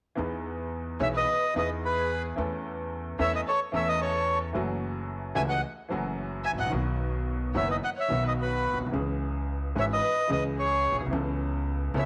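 A bright, slightly detuned upright piano and a woody, growly pizzicato upright bass open this passionate, playful tango excerpt at 0.2 s, moving with a loose rubato feel. At 1.0 s a reedy, mid-forward bandoneon takes the melody up front, touched by slapback echo, while a lush, bowed violin section with smooth vibrato carries a close second line beneath it. Light studio reverb surrounds the music as the harmony moves from Emaj7 to Aadd9/C#.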